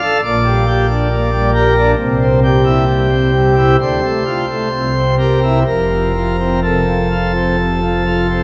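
Serene and reverent, this brief classical passage is a chorale-style piece for solo pipe organ in F major, moving in 4/4 at a slow 62-69 BPM with a flexible, rubato feel. The organ's principal chorus sounds full and up front, with a romantic voicing that spans from a deep F1 up to F5. Its harmony travels from Gm/Bb through C and Dm to a C7 at 4.7 seconds, settling on F at 5.7 seconds. A cathedral reverb with a long 6.0-second decay surrounds the organ, giving it a vast, resonant halo. Cut from a longer work, the 8.4-second fragment feels like a single devotional phrase drawn to a cadence.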